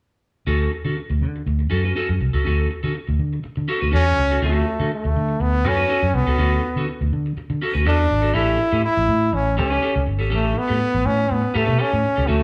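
Joyful and glamorous, this disco excerpt moves at 122 BPM in D major, opening at 0.5 seconds with a clean, picked electric guitar carrying a vibrato effect over a round, amped fingered electric bass that sits up front. A brilliant, close-miked trombone enters at 3.9 seconds to take the pop-style solo melody with vibrato and a slapback echo, as the harmony moves from Dmaj7 to A7 at 8.3 seconds. The band plays live in one large studio room with a moderate reverb, and the piece is cut from a longer work.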